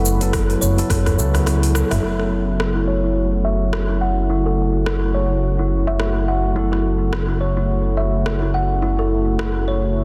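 Organic downtempo at 106 BPM in F# minor, swung on the sixteenths, with a warm, hypnotic pull: a dark, portamento synth bass sits up front and pumps under an F#m7 of detuned, chorused analog pad and clean tine electric piano with tape echo. A woody, mellow kalimba plays ringing arpeggios through tape echo, with a filter sweep on it from 2.0 seconds. A deep house kit with metallic hats, rim click and shaker, an overdriven electronic kick that sounds only briefly, a drum fill from 0.9 seconds and a close, dry udu entering at 1.1 seconds round out a dense, heavily limited mix in light reverb.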